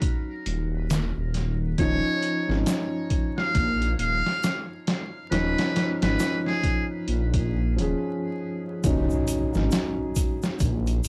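A dry hardware recording laced with vinyl crackle frames this hypnotic, dark trip hop excerpt at 68 BPM in Eb minor, swung on the sixteenths. A soft, felt-muted upright piano with audible action noise, harmonic tremolo, vintage 12-bit sampler grit and tape echo moves from Ebm7 to Dbadd9/Eb over a pitched-down, compressed sampler drum kit with a thumpy kick, a deep, detuned saw bass that rumbles and beats, and an egg shaker in the background. A buzzy trumpet with a metal mute, light vibrato and tape echo plays a jazz-style solo from 1.8 to 6.9 seconds, and after a stop the music returns on Ebm7 with an electronic impact at 8.8 seconds.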